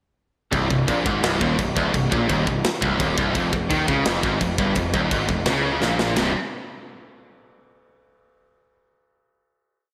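A short, complete heavy metal piece in C minor at 170 BPM in a straight 4/4, dark and relentless, opens at 0.5 s with three picked electric guitars, bass and drums all starting together on a single-note riff. The guitars sit in the background: one crunchy and overdriven, double-tracked with a slapback echo, and two high-gain distorted guitars, one of them also carrying slapback echo. A growly, fuzzy picked electric bass drives eighth notes underneath, doubling the guitar riff. Up front, a tight acoustic metal kit, its kick equally tight, with a medium-tuned snare and bright crash and ride cymbals plays a half-time groove, capped by a drum fill from 5.8 s. The riff moves from C minor to an Eb9 before everything lands on a final C5 chord at 6.2 s, held until 7.6 s. A lush hall reverb gives the whole an arena-sized sound, and the tuning sits slightly below standard pitch.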